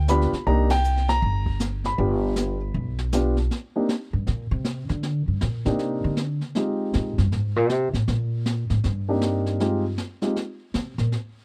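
Cool and late-night, this swinging jazz piano trio clip in C minor moves at a brisk 158 BPM, with a dark, mellow upright piano carrying the melody up front, its action noise audible and its notes sustaining long. Pizzicato upright bass with a woody, steel-string tone sits close beside it, and a brushed drum kit with a medium-tuned snare and boomy kick adds natural small-room color behind them. After a band accent at 0.7 seconds, the bass takes a solo from 3.5 seconds over Cm7 and Fm7 changes, all captured in a dry, close 1970s-style studio sound.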